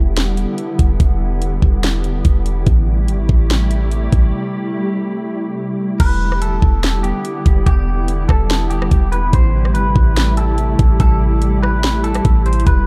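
A glassy, ethereal FM pad holds sustained Em7 and Am7 chords with ensemble chorus, its own reverb and sidechain pumping, over a deep, boomy 808-style bass with a fast attack and decaying sine tone. A trap drum kit with a knocking kick, sharp snare, metallic hats, rim clicks and crashes sits up front at 144 BPM in a half-time feel, setting a spacious, hazy atmospheric cloud-rap mood in E minor. After a break from 4.3 to 6.0 seconds, a clean, twangy, scooped electric guitar enters at 6.0 seconds with a quiet melody in lush chorus and tape echo, all within a dark, dry production cut from a longer piece.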